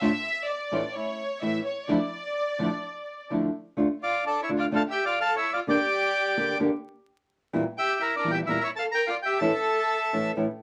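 A sultry, tense tango excerpt in D harmonic minor, moving at 128 BPM in 4/4 with a rubato feel. A smooth violin section carries a second line with light vibrato, a small, thumb-plucked nylon-string guitar accompanies with audible finger squeak, and a chamber string section with gut-string tone adds stabs until 3.5 seconds. At 4.0 seconds a bright, reedy bandoneon takes the melody up front over Dm, Gm/D, Edim and A, all set in a moderate studio reverb with vinyl crackle.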